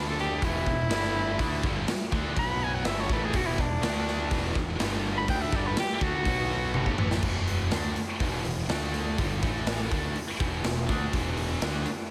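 Hard rock at 123 BPM with an anthemic, swaggering mood, cut from a longer piece: a vintage-toned soprano saxophone with vibrato and scooped notes takes a solo over the opening until 7.2 s, closed by a drum fill, while two scooped high-gain guitars and a very quiet, tight distorted guitar pick out riffs around E5, G5, Em11 and D5 chords. Underneath, a fuzz-drenched picked electric bass pushes punchy low notes, and a raw garage drum kit sits up front with a gritty, saturated sound, a pumping stone-room character and a rolled-off top. After the sax drops out, the riffing guitars, bass and drums carry the second section to the end in a big arena sound with lush hall reverb.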